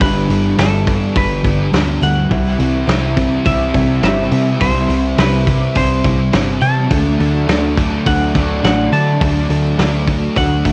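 From the opening moment of this dreamy, wistful shoegaze and dream-pop rock excerpt at 104 BPM, a loose indie drum kit with a fat snare and punchy kick sits up front beside a thick fuzz guitar riff coloured by distortion and ensemble chorus, while a round, foam-muted overdriven bass anchors the low end, a dark overdriven guitar riff with reverse reverb hangs in the background, a very quiet, shimmering twelve-string acoustic picks octave-doubled arpeggios, and a bright, clean semi-hollow guitar carries the melody through cassette tape and analog delay over G6, C and D chords, captured as a home cassette recording with light reverb and small-room ambience.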